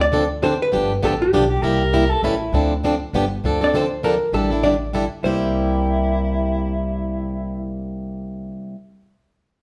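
Acoustic string swing in a charming, swinging jazz manouche waltz feel, cut from a longer piece. A dark, clean, compressed hollow-body electric guitar carries the picked melody over a boxy, up-front plugged-in acoustic guitar picking swing accompaniment and a woody, thumpy gut-string upright bass. A mellow soprano saxophone with light vibrato adds a distant second line from 1.5 s and returns at 5.2 s, the live band sharing one roomy studio space.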